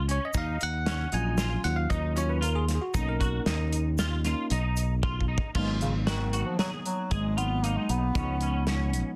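A straight, driving 5/4 at 115 BPM propels this tense progressive instrumental excerpt in G# dorian, where a barky, bell-like tine electric piano with plate reverb takes a solo through the first 5.5 seconds over a tight soul drum kit with dark cymbals, an up-front, bright fingered electric bass, clean picked arpeggios from a hollow-body electric guitar treated with ensemble chorus and plate reverb, and a grainy shaker in the background, until a drum fill at 5.0 seconds gives way to a breathy bass clarinet melody entering at 5.6 seconds with vibrato and scooped jazz-style notes, bathed in plate reverb and digital delay, the whole mix sitting in a dense, heavily limited modern master.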